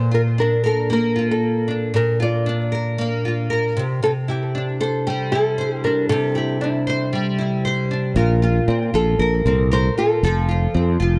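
A straight, easy-going 4/4 pulse at 116 BPM carries this heartfelt acoustic pop fragment, where a bright, fingerpicked nylon-string guitar with finger squeak and tape echo sings the melody up front over a second, boxy double-tracked nylon-string guitar accompaniment moving through Bb and Cadd9, until a growly, punchy fretless electric bass enters at 8.2 s under Bbsus2 and F in a small room with light reverb.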